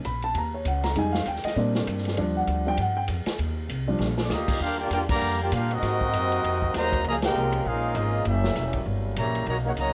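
Brassy and swinging, this big band jazz excerpt in Eb major moves at a brisk 197 BPM, with a woody pizzicato upright bass and a punchy, natural drum kit driving throughout while an intimate grand piano, its action noise audible, leads the opening until a drum fill at 4.0 seconds ushers in a mellow, lightly vibrato trumpet section on melody at 4.2 seconds, a soft-attacked trombone section on a second line, and a very quiet, clear trombone section holding sustained chords, with band accents punching through and the whole recording sitting in light reverb under a worn, warbling cassette-tape pitch drift.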